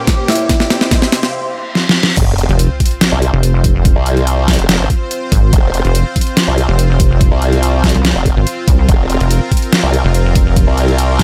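A lush, detuned supersaw pad pumping under sidechain opens this heavy, chaotic half-time dubstep excerpt alongside a background riser, reverse cymbal and sub drop and a brief airy, breathy pad, while a dark, boxy baby grand piano with digital delay sounds a short melody behind up-front overdriven drums with a knocking kick, deep snare and bright hats, until the drop brings in an up-front formant-sweep wobble bass at 2.2 seconds, joined at 2.5 seconds by a saturated, pulsing pluck wobble bass, both chorused and overdriven in a digital ambience.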